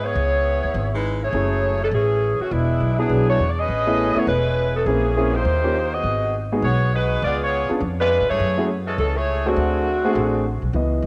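Dramatic and sultry, this fast big band swing fragment in C# minor at 204 BPM sets a smooth-topped, vibrato-rich saxophone section on the melody over a woody, thumpy pizzicato upright bass on gut strings, with a deep-bassed concert grand piano joining the accompaniment at 1.3 seconds, the saxes and piano carrying a cassette-tape grain, all inside a lush hall reverb.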